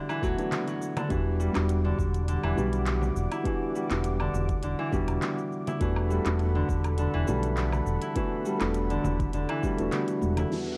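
Organic downtempo with an earthy mood, built on a dark, intimate felt-muted upright piano accompaniment carrying digital delay and sidechain pumping, beside a ringing, fingerpicked Celtic harp playing arpeggios up front. A smooth gliding synth bass with portamento pumps beneath an overdriven, deep electronic kick, crisp filtered hats, handclaps, cabasa, toms and woodblock from an organic electronic drum kit, and a soft-handed frame drum in the background, while a detuned, chorused warm analog pad enters at 1.1 s as the chords move from Gmaj9 to Em9 and Gmaj9/E. A drum fill lands at 10.2 s before a downlifter and a very quiet twinkling granular texture close this fragment of a longer piece, the mix sitting in light reverb and the warbly pitch drift of worn cassette tape.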